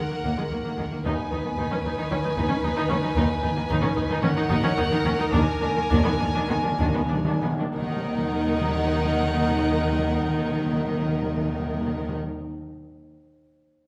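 Stormy and urgent, this quick classical-period symphony movement in E-flat minor moves at 92-115 BPM in 4/4 with a rubato feel, slowing down from 2.1 to 7.7 seconds. Violins carry a floating, pure melody over a second violin line with vibrato and viola accompaniment, while woody cellos in the background and intimate, close double basses hold a dark low E-flat, all bowed sul tasto. Dry calf-headed timpani struck with medium mallets enter at 1.1 seconds and add a fill from 5.3 seconds, all set in a reverberant recital hall in this excerpt from a longer piece.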